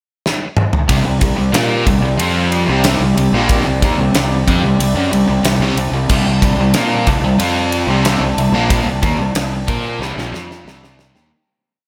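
Rhythm-first at a straight 92 BPM in 4/4, this energetic, powerful hard rock piece opens with a drum fill on a polished, gated 80s kit with bright cymbals, a tight kick and a medium-tuned snare up front. At 0.9 seconds a C5 power-chord riff arrives, played by a sludgy distorted guitar and a background semi-hollow guitar with phaser, doubled by a growly, fuzz-driven fingered bass in driving eighth notes. A hollow, flute-like soft pad with subtle chorus sustains mellow chords behind them in a lush hall that gives a big arena sound, before the whole piece fades out from 8.7 seconds.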